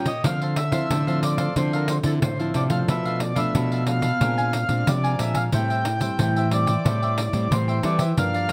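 A reedy, mellow accordion leads this lively, sunny samba-choro fragment at 91 BPM, carrying the melody over crisp picked cavaquinho and two fingerpicked classical nylon-string guitars, one playing accompaniment and the other the bass, with finger squeak audible on one of them. A jingly pandeiro joins at 0.1 seconds, struck with hard hands and sitting close, dry and up front. The harmony moves from Dm9 through Bm7b5 and Bb9 to Am7, captured with close, detailed microphones and light reverb.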